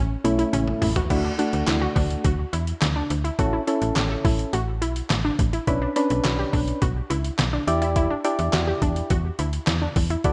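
A straight 4/4 groove at 105 BPM drives this bright, upbeat synth-pop excerpt in D major, cut from a longer piece. A trip hop sampler-style drum kit sits up front, its pitched-down, muffled sound carrying a thumpy kick, medium-tuned snare, handclaps, hi-hat, toms and crash, all roughened by overdrive and gated reverb, with a drum fill from 0.5 to 1.1 seconds leading into the main section. Beneath it, a slap-like FM bass adds a snappy, metallic attack in a low register. Soft electric-piano-like synth keys, round and gently warbling with a vintage, full-bodied tone, supply chorus-treated accompaniment that enters at 0.2 seconds. Above, a lush, detuned unison pluck spins arpeggios through tape echo, with a punchy, wave-folded edge and a filter sweep. The harmony moves from A to D, then A, Bmadd9 and Em7, all set in light digital ambience.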